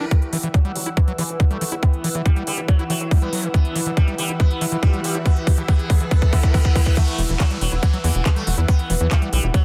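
An intense, driving psychedelic trance excerpt in E minor at 140 BPM opens on a morphing wavetable pad holding sustained chords, an airy, breathy pad texture, background risers and reverse cymbals, and a squelchy, screaming acid riff soaked in distortion, chorus and dub echo. A bright, buzzing sitar melody with phaser and dub echo runs through a filter sweep during the build-up, joined by an overdriven, up-front kick, a techno kit of crash, handclaps and smooth hi-hats, and a tight, punchy sequencer bass with a sawtooth pluck, while the pads, acid line and sitar pump against the kick. A drum fill from 3.5 s and a reverse cymbal lead into the drop at 7.0 s, all within a dense, heavily limited and mostly dry mix.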